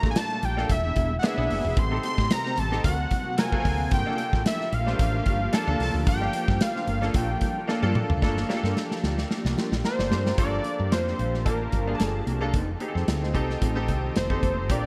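A fat, detuned sawtooth lead with a sub octave, vibrato and delay carries the melody up front, singing between Bb4 and C6 over polished 1980s jazz-funk pop at 112 BPM in 4/4 with a light swing on the sixteenths. The mood is slick and bittersweet, moving through Gm9, E7, Am7b5 and D7alt before settling on Gm7 and reaching F7 at 12.5 seconds. Beneath it, a brilliant grand piano with audible action noise and analog chorus supplies the accompaniment, while a silky, very quiet string machine holds slow-swelling sustained chords and a clean, fingered electric guitar plays a riff in the background. A round, hollow-body fretless bass anchors the low end, and a tight, up-front studio kit with a medium-tuned snare and gated reverb drives the groove, adding a drum fill from 7.7 to 8.2 seconds. High-tuned congas played with soft hands ring very quietly from 0.2 seconds, and the whole passage sits in a small room with light reverb and bright digital-era sheen, cut from a longer piece.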